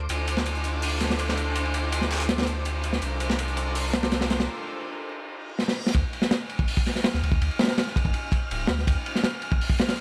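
A crunchy, saturated breakbeat kit sits up front with a punchy kick and dark cymbals, driving this frenetic, atmospheric drum and bass excerpt at 164 BPM in D minor, joined by a thick, deep sub bass and, until 4.4 seconds, a compressed, tape-toned sampler-style kit with filtered hats and snare. Bowed symphonic strings with light vibrato and a 12-bit sampler grit hold sustained chords over Dm9 and C13sus4, while an airy, breathy wind-like texture lingers in the background with its own reverb. After a break from 4.5 seconds, a brief electronic reverse cymbal and drum fill lead into the drop at 5.9 seconds, all over a dry sound with vinyl crackle.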